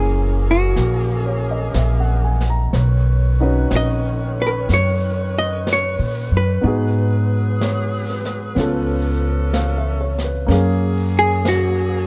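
A dark, clean hollow-body archtop guitar carries the melody up front in this melancholic, smoky jazz ballad excerpt, which swings gently at 62 BPM over chords moving from Gb9 through Bmaj9, Abm7 and Dbaug7 back to Gbmaj9. A woody, pizzicato upright bass sits prominently beneath it, while a warm baby grand piano with short sustain adds accompaniment and a bright saxophone section holds sustained chords with vibrato. Brushed drums enter at 0.8 s with a high-tuned snare and hi-hat, all captured with close, detailed microphones and little reverb.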